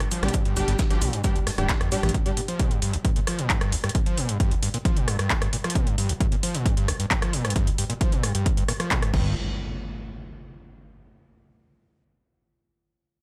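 Set in a light reverb and digital ambience, this dark, hypnotic stretch of driving peak-time techno is cut from a longer piece and built on a punchy, up-front electronic kick, a techno kit of handclaps, rim clicks, crash and metallic hats pumping with sidechain, and a squelchy, screaming distorted acid riff with chorus and digital delay. In the opening two seconds a deep, rumbling detuned saw bass, a thick, warbling vintage rave stab with chorus and delay, and a gritty, pitched-up breakbeat sampler kit filtered in the background briefly join the groove. At 9.1 s the bass returns as the chord drops away and an electronic impact hits, ringing out to 10.9 s.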